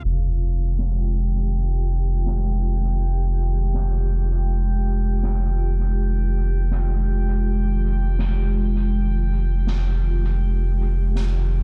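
Ambient dub at 81 BPM in F minor, spacious and deep, where a round, up-front sub bass holds a low F beneath a mellow, detuned organ-like pad sustaining an Fm9 chord with ensemble chorus and reverb, a faint glassy texture of drifting overtones hovers above with its own chorus and reverb, a natural, hall-toned snare enters at 0.8 s trailed by dub echo, and a filter sweep runs through this dark, small-room excerpt cut from a longer piece.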